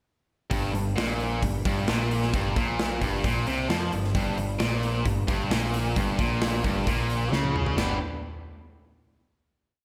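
A straight, driving 4/4 rock groove powers this short, sunny classic rock piece, built around a single riff. The big acoustic drum kit sits up front with a punchy kick, medium-tuned snare, hi-hat, toms and bright cymbals, and drops in a fill from 7.3 to 7.8 seconds. Two picked electric guitars play single-note riffs: a tight, distorted one placed up front, and a sludgy, overdriven one with a warmer edge. The growling picked electric bass is dark, round and overdriven, doubling the guitar riff with a syncopated line. The riff rests on a G diminished chord before the band lands on a final G chord at 7.8 seconds, ringing out in a big arena sound with moderate recital hall reverb.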